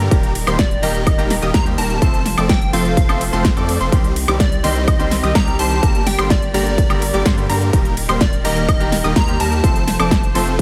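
A bright baby grand piano, distant bowed symphonic strings, a detuned unison sawtooth pluck with digital delay, a huge supersaw riff and a deep, saturated sub bass open this euphoric festival progressive house excerpt at 126 BPM, with the piano, pluck, supersaw and bass pumping to the sidechain over an overdriven dance kit of crisp hats, ride, snare and woodblock. A punchy, up-front electronic kick lands at 0.1 seconds, and at 0.6 seconds a catchy square-wave unison lead with a filter sweep and digital delay carries the melody over a powerful Eb, F, Cm, Gm progression. The mix is dry and loud overall, with studio reverb given only to the kick and the drum kit.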